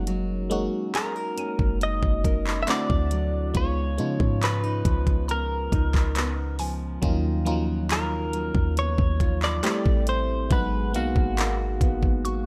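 Opening together on glassy, bell-like FM electric piano with chorus and phaser, fingerpicked nylon-string guitar arpeggios, a deep, boomy 808-style bass and a woody mallet-like synth pluck with tape echo in the background, this late-night, longing contemporary R&B excerpt at 69 BPM brings in an up-front drum kit of knocking kick, hi-hat and handclaps at 0.1 seconds and a compressed, direct-recorded clean electric guitar melody at 1.0 seconds, moving through chords such as F#6, D9 and D#m9 in a dark production with digital ambience.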